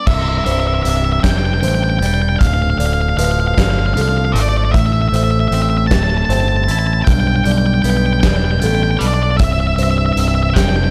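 Post-rock in a slow 6/8 at 52 BPM, hopeful and soaring, this short excerpt in C major moves from C through Dm and Am to Gadd9/B before returning to C. A dark, fuzzed lead guitar with slapback echo carries the melody over clean, twangy guitar arpeggios and a soft, felt-muted upright piano sitting in the background with audible action noise. Underneath, an up-front, bright overdriven bass growls beside a big acoustic kit with a fat snare and punchy kick, all set in a studio reverb with a dark, warm production.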